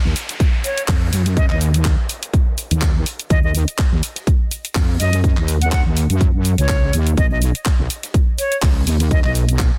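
A dense, heavily limited mix in small room ambience opens this aggressive, bouncy bass house excerpt at 124 BPM in Eb minor, where a saturated, detuned sawtooth wobble bass with chorus and sidechain pumping sits up front beside a punchy electronic kick, layered house drums with cabasa, handclaps and a soft-clipped snare, a very quiet dark acoustic kit of hi-hat, shaker and snare, an electronic downlifter ending at 3.3 seconds, and an airy silver concert flute with vibrato and dub echo carrying the melody from 0.6 seconds over an Ebm chord that moves to B at 7.2 seconds.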